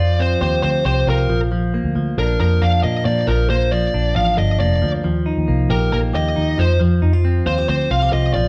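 A fuzz-drenched lead guitar sits up front and carries the melody, its dark, distorted, compressed tone giving this brief indie pop fragment its edge. Beneath it, a direct-recorded clean electric guitar picks bright, twangy arpeggios, while a vintage foam-muted bass, round and amped, holds down the low end close to the listener. The band plays together live in one room, and a stone-room reverb of about 1.2 seconds lends the whole performance a wet, echoing space. At 136 BPM in a straight 4/4 and set in Bb major, the mood is youthful and bright. The harmony moves from Fsus2 to Bb, then to Ebadd9 at 5.0 seconds before returning to Fsus2, all three parts sounding throughout the 8.5-second cut from a longer piece.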